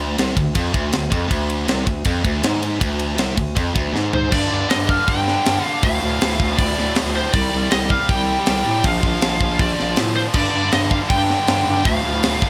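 Relentless and dark, this heavy metal excerpt in D minor drives at 159 BPM with a distorted, double-tracked rhythm guitar riffing up front, a warm bass clarinet holding the low end, and a tight acoustic drum kit with a high-tuned snare and rolled-off top, until a drum fill at 3.9 seconds ushers in a bright high-gain lead guitar with digital delay at 4.1 seconds over chords moving through G5, C5 and Bb.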